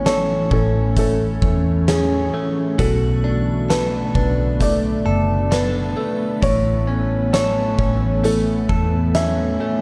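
Ethereal and melancholic, this slow dream pop excerpt moves at 66 BPM in a straight 4/4, resting on A before shifting to Bm7 at 2.8 seconds and returning to A at 6.4 seconds. A soft, felt-muted upright piano carries the melody with an intimate, vintage tone, its notes trailed by tape echo. Beneath it, an airy pad holds sustained chords with a slow attack and long release, thickened by ensemble chorus and its own reverb. A clean, direct-recorded electric guitar plays compressed, scooped arpeggios through subtle chorus and tape echo. The foam-muted fingered bass sits slightly forward with a dark, round voice, while an oversized low-tuned drum kit brings a punchy kick, fat snare and hi-hat in a bright stone room, its sound saturated and gritty with a pumping ambience. From 2.8 to 6.8 seconds, a shimmering FM bell with a halo of chorus and echo glints quietly in the background, and a light reverb softens the whole picture.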